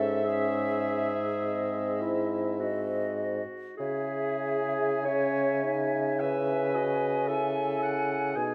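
A wet recital hall reverb surrounds this brief, elegiac excerpt from a slow, romantic wind quintet movement, played with solemn rubato over a progression from C# minor through G# and back. A hollow, pure concert flute with vibrato carries the melody while a distant oboe with light vibrato sings a second line in the same high register, and a soft-attacked clarinet and a roomy French horn set in the background fill out the accompaniment. Beneath them, a mellow, close-miked bassoon with vibrato sits up front on the bass line, all five parts sounding together for the full 8.5 seconds.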